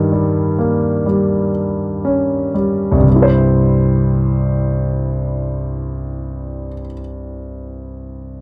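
A vintage-toned concert grand piano sits up front in this intimate, melancholic folk fragment at a slow 57-65 BPM in 4/4, its smooth, deep-bassed accompaniment spanning C2 to C5 with audible action noise, easing back in tempo over the first 3.1 seconds on an Eb7/G chord before settling onto C at 3.1 seconds in a dry, close 1970s-style studio sound with moderate booth ambience, until the piano stops at 8.4 seconds.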